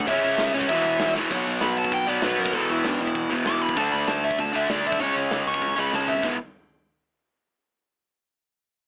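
Through a lo-fi AM-radio filter with light reverb, this rebellious, energetic punk rock fragment pairs an up-front, double-tracked crunchy rhythm guitar riff over chords moving from C#m through E5, B5, D5 and C#5 with a growly picked bass in the background and a big studio drum kit of bright cymbals and a punchy kick, whose fills at 1.2 and 5.9 seconds frame a dark, smooth, overdriven lead guitar solo running from 1.3 to 6.2 seconds.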